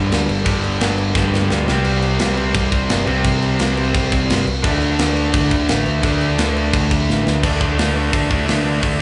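Two overdriven electric guitars and a round, amped bass open this raw, urgent punk rock excerpt together, with the tight metal drum kit joining almost at once at full pace in a straight 4/4. The cranked stack guitar sits up front with a bright, picked riff, while the sludgy guitar shares the same register in the background with a darker tone, and the bass sits underneath. The riff moves through G5, C5 and D5, and the drums mark the turns with fills at 1.2 s and 7.1 s: bright cymbals, a medium-tuned snare and a tight kick, all mid-forward and close to the listener. A new section arrives at 7.4 s and carries on to the cut. The band sounds like it is playing live in one large studio room, with a moderate reverb and a top end that stops short of real sparkle, giving the whole take a rough, immediate edge.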